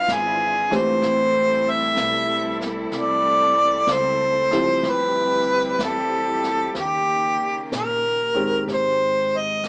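Tender and romantic, this swung jazz ballad fragment sets a soft-attack harmonica melody with vibrato up front, over rich, bowed cello-section chords that hold until 8.7 s, while a woody pizzicato upright bass and a brushed drum kit sit in the background, and an intimate grand piano with audible action noise and deep bass enters at 0.7 s, all heard through a large studio reverb with a small-speaker tone.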